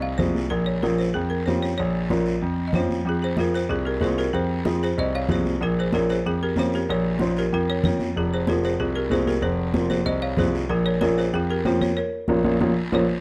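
Danceable and driving, this brisk F minor cumbia at 188 BPM sets a bright, woody folk marimba with hard mallets carrying the melody over a clear, up-front grand piano holding the bass, a dark, mellow upright piano comping between Fm and Bbm, ringing high-tuned congas and a raspy, distant guiro, all in a moderately reverberant room before a band accent from 12.0 seconds and a drum fill at 12.6 seconds close the excerpt.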